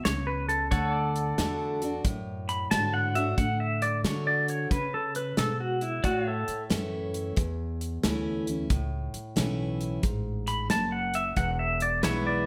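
Down-home and heartfelt, this 12.5-second excerpt of honky-tonk and classic country moves at 90 BPM in 4/4 with a swung eighth-note feel, sitting in A major and moving from A to D, back to A at 6.0 seconds, and on to E at 11.4 seconds. A pedal steel guitar takes the solo melody up front, its warm, clean electric tone played with fingerpicks, compressed, and shaped by volume swells and slide. A second pedal steel guitar holds sustained chords alongside it, sharing the same fingerpicked, swelling, slide character but sitting lower in the mix. A bright, full-bodied dreadnought acoustic guitar picks the accompaniment, with finger squeak audible, while a woody, thumpy upright bass on gut strings plucks a dark low line. A natural acoustic drum kit with a tight kick, medium-tuned snare and hi-hat sits up front with a small-room character, all set in a moderate large-studio reverb.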